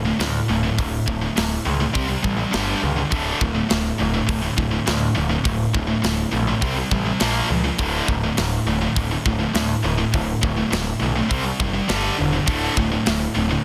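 Heavy and relentless, this heavy metal excerpt pounds along at 103 BPM in a straight 4/4, cut from a longer piece. Two bright, picked, high-gain electric guitars carry the riff throughout, one distorted and up front, the other scooped and sitting further back, both spanning D2 to C4. Beneath them a growling picked electric bass, direct and amped with overdrive, sits up front in the low register from D1 to D2. A tight metal drum kit with a polished, airy big-room sound drives hi-hat, kick and a medium-tuned snare from 0.2 to 13.2 seconds, its tight kick soft-clipped. The harmony circles around D5 power chords with brief moves to C5, G5 and Bb5, all wrapped in studio reverb and a dense, heavily limited modern master.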